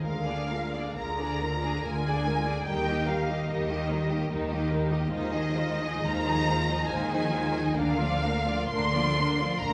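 In a rubato 3/4 at roughly 61-74 BPM, this short excerpt from a slow romantic movement for string orchestra unfolds with a lyrical, serene calm. The first violins carry the melody high between Eb5 and C6, their bowed tone expressive and lush with vibrato, sitting up front yet carrying a distant quality. Beneath them the second violins trace a focused second line, while the violas fill in the accompaniment with a smooth, even sound. Cellos anchor the bass with a close, rich presence, with double basses an octave below that sound smooth, even and far off. The harmony moves gently from Bb7/D through Eb and Fm7/Eb to Bb/D, all five sections playing together throughout the 9.7 seconds, bathed in the reverberant glow of a recital hall.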